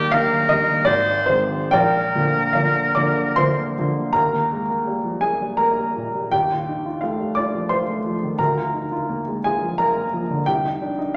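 A clear, close-miked oboe with vibrato sings the melody up front in this serene classical duo, a brief passage cut from a longer romantic piece in Eb major and 3/4 time, moving with rubato between 67 and 90 BPM and tuned to A4 = 436 Hz. The warm, intimate baby grand piano accompanies from the start, its short sustain and audible action noise close at hand, and after the oboe falls silent at 3.7 s the piano carries on alone through a new passage until 11.2 s. A wet recital hall reverb surrounds the pair with a resonant space.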